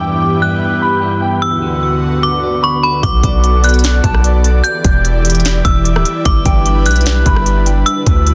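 A metallic, ringing FM bell melody floats over a breathy, chorused pad, clean electric guitar arpeggios and a faint wind-like noise texture while a filter sweep runs through the opening 3.0 seconds, before a deep, mellow 808-style bass and an up-front trap kit with a hard-clipped kick, sharp snare and crisp hats arrive at 3.0 s, giving this hazy, spacious half-time cloud-rap fragment a dense, heavily limited digital sheen.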